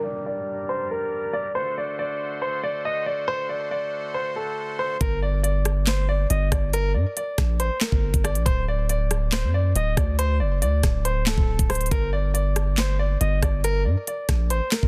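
Drill hip hop at 139 BPM in a half-time feel, tense and ominous in G harmonic minor, where a clear, intimate concert grand piano carries a filtered, delayed melody with audible action noise over reedy accordion chords and a background downlifter, until at 5.0 seconds a deep, sine-toned 808-style bass and an up-front electronic drum kit with knocking kick, crisp hats, rim clicks, handclaps and a sharp, softly clipped snare arrive, all within a dry, dense, heavily limited modern master cut from a longer piece.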